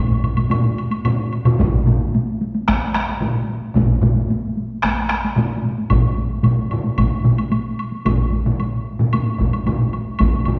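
A hard-stick taiko ensemble sits up front from the start, its distant, large-room sound carrying the weight of this powerful, ceremonial Japanese traditional drum piece. Around it, further taiko layers build a dense body of percussion: one group played with hard sticks and heard close, a heavy-stick group set in the background in a small room, and another hard-stick group up front in a live room that joins at 1.6 seconds as the music moves into its second section. A woody woodblock, close and dry, sounds through the opening and returns from 5.9 seconds. The tempo holds at 112 BPM in a straight 4/4. Cut from a longer piece, the recording rings in a wet recital-hall reverb with a dark, rounded top end.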